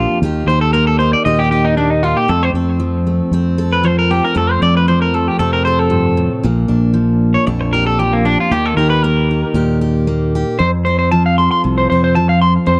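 A dry, close 1970s-style studio sound with small room ambience carries this danceable, carefree highlife excerpt at 116 BPM in F mixolydian, where a bright, jumbo-bodied steel-string acoustic guitar with audible finger squeak picks the accompaniment, a slightly broken-up, twangy electric guitar with tape echo plays arpeggios, a round, punchy fingered bass sits underneath, and a clean electric guitar solo runs over the first 10.6 seconds before the passage moves to a new section that is cut off at 12.8 seconds.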